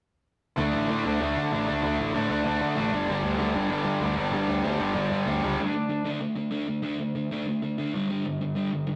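Aggressive and urgent, this short punk cut in a straight 4/4 drives two picked electric guitars up front: a sludgy, overdriven one with a warm tone and a tight, bright one with a distorted edge, both playing a riff over D5 and G5 power chords. A growly fuzz bass picks alongside them until 5.6 seconds, the tight guitar drops out at 6.1 seconds, and the sludgy guitar carries on alone to 9.0 seconds. A stone room's moderate reverb and rough rehearsal-room saturation give the recording a raw, live grit.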